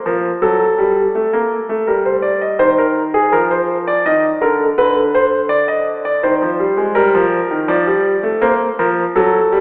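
Classical, baroque-style two-part invention in C minor for solo grand piano, moving at 82 BPM in a straight 3/4 with a solemn, contemplative mood in this brief cut from a longer piece. The concert grand sounds warm, natural and up front, with a deep bass reaching down to D3 and a range extending up to Eb5, passing through chords such as F#m, Gm, Bbadd11 and a closing Fsus4 near 8.4 seconds. A wet concert hall reverb places the listener further back in the room, while a telephone-like coloring narrows the overall sound.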